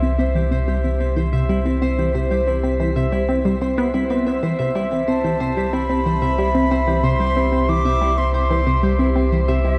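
Drenched in a huge, dark reverb with a long tail, this cut from a longer piece of ambient, sequencer-driven space music moves at 92 BPM in a straight 4/4 on a C major chord, with an expansive, cosmic mood. A tight, detuned sawtooth synth riff with a filter pluck and chorus drives the music alongside ringing, fingerpicked Celtic harp arpeggios up front, a deep, round sine sub bass holding C2, and a pulsing, tempo-synced triangle texture that fades in from the background through a shimmering reverb. At 5.1 seconds an airy wooden flute enters with a bright, vibrato-laden melody, treated with shimmer reverb and analog delay.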